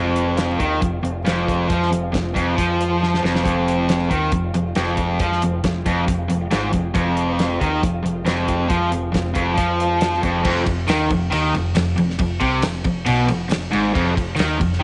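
A gritty, swaggering classic rock excerpt opens on a dark, woody fingerpicked twelve-string acoustic guitar shimmering in the background beneath a bright, up-front overdriven electric guitar riff, a cranked stack guitar riff set farther back, and a growling, punchy overdriven bass. A dry, damped 70s drum kit with a fat snare, tight kick and dark cymbals sits up front and plays a fill at 3.0 seconds. At 10.5 seconds the twelve-string stops and a crunchy, double-tracked overdriven guitar riff enters, joined by a very quiet, jingly tambourine, all in a small room with moderate spring reverb and a rolled-off top.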